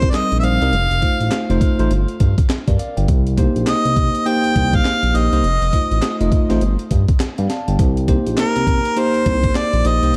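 Bouncy and slick, this new jack swing R&B excerpt in C dorian moves at 102 BPM with a swung sixteenth feel, as a jazz-style harmonica with light vibrato, scooped notes and delay carries the melody over bell-like tine electric piano chords moving through Cm7, F7 and Gm7, a smooth sawtooth-and-square synth bass with vibrato, and a gritty, compressed sampler-style breakbeat kit of thumpy kick, high-tuned snare, hi-hat and handclaps, set within a dark, warm production and light digital ambience.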